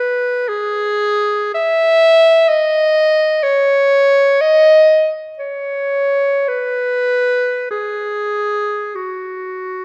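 A lone clarinet opens this classical passage, its bright tone shaped by a soft attack and placed up front. The piece moves in free time, unfolding expressively with a yearning, meditative mood. Playing in a classical style, the clarinet moves between F#4 and E5 as the only voice from start to finish, 0.0 to 9.8 seconds. A moderate reverb, like that of a scoring stage, gives the instrument a gentle halo that lingers for about 1.5 seconds. The recording is a short cut from a longer work, so it offers just a brief glimpse of the solo line.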